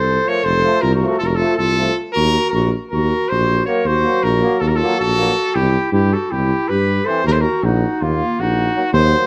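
A fiery, virtuosic stretch of Balkan brass folk in 9/8 at a brisk 317 BPM counted in eighths, opening at 0.0 seconds with a vibrato-laced trumpet carrying the melody up front alongside a warm clarinet second line and a mellow, smooth-topped tuba bass. From 0.3 seconds a bright trombone, sounding distant and roomy, and a soft-attacked, vintage-tinged euphonium join in the background with light vibrato, as the harmony moves through F, E-flat minor and C in E-flat dorian with a raised fourth. Close, detailed microphones and light reverb give the classical-style playing a crisp presence in this short cut from a longer piece.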